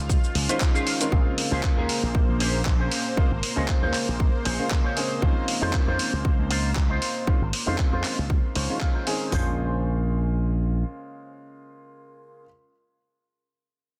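A swung 117 BPM groove in 4/4, driven by a punchy house kit layered with a gritty, sampler-style soul kit of cabasa, handclaps and hi-hat, carries this sensual nu-disco excerpt in Bb minor, with a bright, growly slap bass with an envelope filter up front, a twangy, clean guitar riff through analog chorus and delay, a smooth vintage grand piano with sidechain pumping, and a lush, detuned pad in the background on a rootless Bbm9, opening on a drop and adding a clean guitar fill at 8.3 seconds before the guitar and piano play alone from 10.8 to 12.5 seconds.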